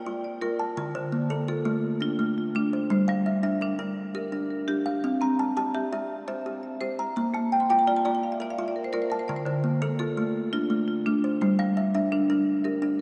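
This hypnotic, warm piece of southern African traditional music opens at 0.0 seconds with a kalimba and a marimba playing arpeggios together in a mbira-style interlocking cycle, moving at 113 BPM in dotted quarters with a straight 12/8 feel. The kalimba sits up front with a plucked, hollow, mid-forward tone and short thumb-plucked notes. The hard-mallet marimba on padauk bars is bright, percussive and full, close-miked, dry and equally forward, reaching from D3 up to D6. From 7.4 to 9.3 seconds the marimba plays a fill. The harmony cycles through Bb, Dm, Gm and C, and the recording sits in a vast, echoing cathedral-like space. The music is cut from a longer piece.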